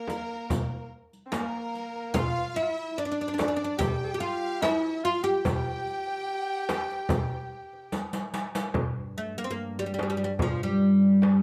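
This hypnotic, longing Turkish makam ensemble piece in G makam huseyni moves at 73 BPM in 4/4 and is cut from a longer work, led by a woody, fretless oud played up front with a plectrum. A rich, focused violin section and an earthy kamancheh with light vibrato and portamento carry a second line until 7.9 s, while a deep, soft-handed frame drum, a crisp metal-shelled darbuka heard from a distance and a dark-jingled riq keep the pulse under moderate studio reverb. During a drum fill, a clear, biting bowed double bass enters at 8.7 s to hold a G drone beneath the oud, frame drum and darbuka.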